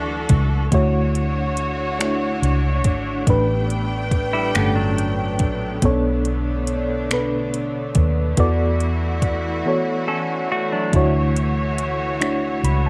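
A slow, straight 6/8 groove at 47 BPM in dotted quarters sets a tender R&B mood in D major. The drum kit is soft and produced, with finger snaps, metallic hi-hat and a gentle kick. A dark, foam-muted fingered bass sits low and punchy underneath. Up front, a mellow FM electric piano with a warbling chorus and tremolo carries the accompaniment, its round, fast-attack notes decaying over chords that move from E9sus4 to Dmaj7, A9sus4 and Bm9. A lush bowed string section holds smooth, even sustained chords with vibrato. A clean, compressed semi-hollow guitar adds a brief second line at 4.3 seconds and again at 10.1 seconds, within a silent gap that runs from 9.7 to 10.9 seconds, all set in light digital reverb in this short cut from a longer piece.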